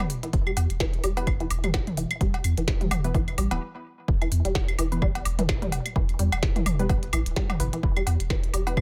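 Sparse and hypnotic, this minimal techno cut in E minor moves at 128 BPM with a swung 16th feel, built on a punchy analog kick, a click kit of clicky hats and a tiny snare, and layered electronic toms, cowbell, claves and woodblock carrying tape echo, while a deep sine sub bass with a pitch-drop attack and a squelchy, detuned blip pluck with ring modulation, phaser, delay and sidechain pumping both pulse alongside a muted dub chord stab with phaser and tape echo, which passes through a filter sweep into a stop at 3.6 s before the drop lands at 4.1 s in a digital ambience.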